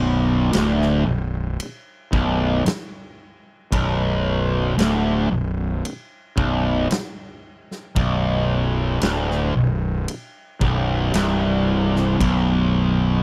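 A double-tracked fuzz guitar dominates this sludgy, ominous stoner and doom metal excerpt, grinding out a low, compressed riff that sits up front and stays planted on a B minor chord throughout. Beneath it, a fingered electric bass adds growly, overdriven fuzz, its bright, punchy tone pushed forward alongside the guitar. A big acoustic rock kit enters at 0.5 seconds with a punchy kick, a medium-tuned snare and bright ride cymbal, and drops out at 12.5 seconds, leaving the guitar and bass to play on until 13.2 seconds. The pace is slow and heavy in a straight four, giving the riff a crushing weight. The sound is dry and close, like a 1970s studio session, with the drums carrying a natural, roomy character.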